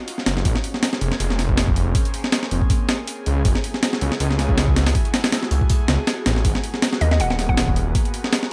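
Nostalgic yet frenetic, this drum and bass excerpt at 160 BPM pairs a gritty, compressed breakbeat kit with a thumpy kick and high-tuned snare against a thick, menacing detuned saw bass up front, while an airy, breathy pad with chorus and phaser sustains minor ninth chords in the background and a woody, mallet-like synth pluck with dub echo surfaces briefly at 7.0 seconds, all in a dry room.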